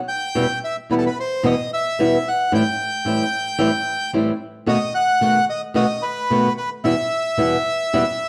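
A reedy, dark bandoneon opens the recording at 0.1 s with a tense, melancholic tango melody in E harmonic minor, played rubato at 111 BPM in 4/4, its close-miked, dry and full tone sitting up front. A fingerpicked flamenco guitar joins at 0.4 s with fresh strings and a warm acoustic sound, also up front, accompanying the line through Em, Am7 and B7 before settling back on Em. The pair is heard in a wet studio reverb from further back in the room, in a short cut from a longer piece.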